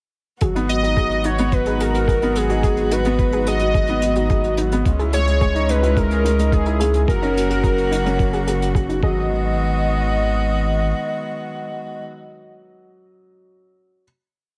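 A small room with light reverb wraps this hypnotic and intimate piano-and-strings electronica piece in G# minor at 108 BPM, where a muffled, thumpy four-on-the-floor kick and a restrained brushed hi-hat drive a drop that runs from 0.4 to 9.3 seconds over G#m7, C#madd9 and F#. A felt-muted upright piano loops a mellow six-step riff with delay, while a soft, round pluck repeats a twelve-step arpeggio in the background with chorus and delay, both drifting against the bar; a dark, woody string quartet holds bowed sustained chords and a deep analog bass with tube saturation anchors the roots, both pumping under sidechain. A velvety, detuned synth lead carries the motif-based melody with chorus, vibrato and delay through a final hit from 9.3 seconds, leaving the piano to ring on alone until 14.1 seconds.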